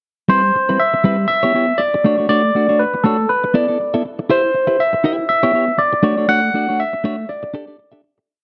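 This is a short, danceable disco piece at 120 BPM in 4/4, with a light 56% swing on the sixteenths and tuning set to A4 = 442 Hz. At 0.3 seconds a barky, bright tine electric piano and a clean electric guitar enter together. The electric piano carries the melody through a combo amp and a phaser, playing a motif-based line of call phrases between A4 and F#5. The fingered, compressed guitar sits up front with a choppy sixteenth-note disco part from G3 to E5. The single verse moves through chords such as Cmaj7, Em6/B, Bm9/A and Dmaj9/A before settling on A7sus4, and a fade-out starts at 6.3 seconds and runs to the end at 8.3. The production is dark and warm, with a moderate plate reverb that gives a driving groove a soft, rounded glow.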